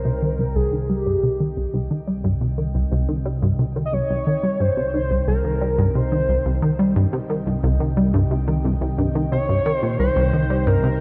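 A plucky analog bass sits up front in this hypnotic, mysterious stretch of ambient, sequencer-driven space music, its punchy, funky riff running from C2 to G3 with subtle chorus and delay until 10.9 seconds. Above it, a shimmering, retro pulse-width lead carries the melody between G4 and Eb5, its mellow tone colored by vibrato, chorus and delay. A sweeping resonant pad holds sustained chords across C3 to G5, evolving slowly under chorus and phaser as it fades in over the full 11.0 seconds. Beneath everything sits a fat analog bass anchored on C2, thick and detuned. At 89 BPM in straight 4/4 and C phrygian, the passage rests on a C minor chord, bathed in a moderate lush hall reverb, and is cut from a longer piece.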